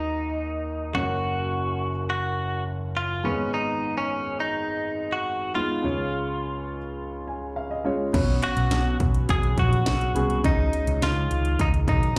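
Piano-driven pop with an uplifting, hopeful mood at 104 BPM in 4/4, this cut opens with a twangy, compressed clean electric guitar carrying the melody over a clear grand piano with audible action noise, both touched by slapback echo, and the piano plays a fill from 7.0 to 8.1 seconds. At 8.1 seconds the chords move to Bsus2 and C#sus2 as a growly, overdriven picked bass, a punchy house drum kit with cracking snare and metallic hats, and a detuned, sweeping pad with chorus and phaser in the background all enter. The sound is dry, heard as a live gig through a club PA.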